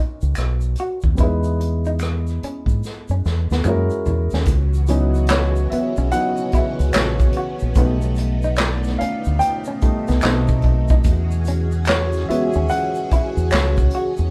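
Late-night and sultry, this swung neo-soul R&B groove sets a dark, woody upright piano and a slightly broken-up, lo-fi electric guitar line over a round, punchy fingered dub bass and a roomy unplugged drum kit played with bundle sticks, with a punchy kick, snare, hi-hat, rim clicks, toms and handclaps. A band-limited egg shaker and finger snaps sit low in the mix. After a drum fill from 2.8 seconds, a lush vintage string machine enters at 4.5 seconds with soft, sustained chords colored by phaser and ensemble chorus, just as the mellow piano takes a solo through the rest of this live, lightly reverberant room recording.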